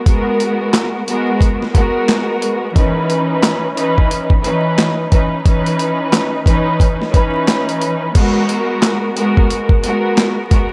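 This boom-bap hip-hop excerpt, cut from a longer piece, moves at 89 BPM in 4/4 with a swung sixteenth-note feel, and its mood is dark and tough. A lush, bowed studio string section carries the accompaniment from the start, rich and smooth with vibrato, filtered at both ends and trailed by dub echo. From 0.1 seconds a sampler-style drum kit sits up front, compressed, pitched down and gritty, with a thumpy kick, a medium-tuned snare, handclaps, hi-hat and crash cymbal, and it has been re-recorded in a small room. The harmony rests in G# minor, moving from G#m9 to C#m9 at 2.8 seconds and returning to G#m9 as a new section begins at 8.2 seconds. The mix is dry in terms of reverb but echo-heavy, with vinyl crackle adding a dusty surface.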